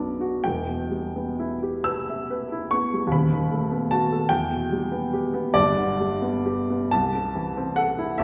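Heard from further back in a recital hall whose wet reverb surrounds it, a warm, intimate baby grand piano with audible action noise and a short, natural sustain plays this brief, nostalgic and serene romantic nocturne alone in a rubato 6/8 at 41-51 BPM, moving through Em, B7/D#, G and Am/C across a range from D#1 to E6 in about 8.2 seconds cut from a longer piece.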